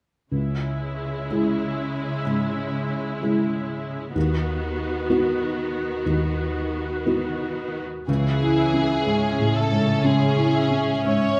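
Rubato and unhurried at 57-64 BPM in 4/4, this cinematic excerpt carries a longing, moving mood. A felt-muted upright piano sits up front, dark and intimate with audible action noise and short sustain, over a lush, distant viola section and a rich cello section bass moving from C#m to B/D#. At 8.1 seconds a smooth violin section with light vibrato and a ringing concert harp playing arpeggios join as the harmony returns to C#m, all carried by a wet stone-room reverb.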